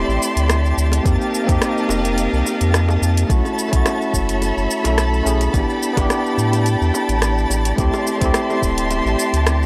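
A round, mellow sub bass sits up front in this relaxed sunset chillout excerpt at 107 BPM with a light sixteenth-note swing, carrying chords that move through D9sus4, F9sus4, B9sus4 and A9sus4 beside a bell-like, bright tine electric piano with analog delay. Rich, bowed studio strings with vibrato hold sustained chords above, while a twinkling granular texture with its own reverb shimmers in the background. An overdriven R&B kit of hi-hat, rim click and shaker joins at 0.1 seconds, soft high-tuned bongos stay very quiet, and a soft, overdriven electronic kick enters at 1.1 seconds, all in a dry, gritty recording.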